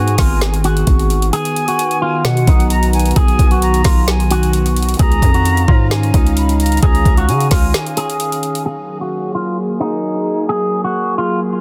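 Hip hop trap at 131 BPM in a half-time feel and F# major, wistful yet triumphant, where a dark, clean envelope-filtered electric guitar carries the melody through lush chorus and digital delay while a distant, expressive concert flute with vibrato adds a second line over an airy, detuned pad of sustained chords, a growling, buzzy 808-style bass drops away at 7.7 seconds, an up-front trap kit of knocking kick, woody snare and metallic hats stops at 8.7 seconds, and a filter sweep then carries the guitar and pad to the close of this dense, heavily limited excerpt.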